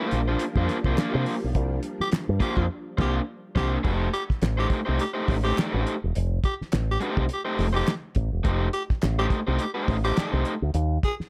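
This playful, energetic funk excerpt opens with a crunchy overdriven guitar playing accompaniment up front, alongside a silky string machine holding soft sustained chords in the background with an ensemble chorus over a C9sus4 chord. A fingered electric bass with an envelope filter sits warm and direct in the mix, while a cloth-damped, thuddy drum kit with a fat snare, tight kick and dark cymbals drives a 104 BPM groove in 4/4 with a light sixteenth-note swing in F mixolydian. Crisp group handclaps join in the background, and the band hits an accent from 1.6 to 3.9 seconds. A growling tenor saxophone enters around 2.0 seconds, raspy and gritty with vibrato and a jazz-style solo voice, its plate reverb matching the guitar's. At 3.9 seconds the music moves to an F9 chord for the second section, where the string machine has dropped away, and the chord changes cease at 10.7 seconds near the end of this fragment cut from a longer piece.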